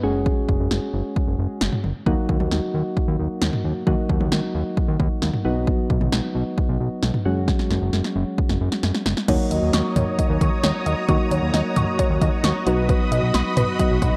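Bright and nostalgic, this synth-pop passage, cut from a longer piece, opens on soft, round electric-piano-like synth keys with chorus over a fat, saturated analog bass. A punchy, overdriven analog drum machine joins at 0.3 seconds and plays a fill from 7.5 to 9.3 seconds. At 9.3 seconds a vintage string machine voiced as violas adds slow-attack sustained chords with ensemble chorus, while a warbling, lo-fi pluck spins arpeggios through chorus and analog delay, all framed by a moderate plate reverb and a dark production tone.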